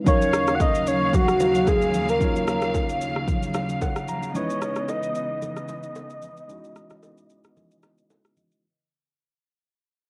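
A swung deep-house groove of deep, tape-saturated kick, rim click and shaker drives this hypnotic, late-night amapiano excerpt, with very quiet, bright congas and bongos tucked beneath. A clean tine electric piano supplies the accompaniment through a combo amp, adding a fill at 3.3 seconds, while a lush bowed string section sustains Ebm9 and then Dbm9 from 4.3 seconds, pumping against the kick. Up front, a round, detuned octave-layered synth lead carries the melody with chorus, vibrato and analog delay, and the whole cassette-recorded clip sits in light reverb under a filter sweep and a fade-out.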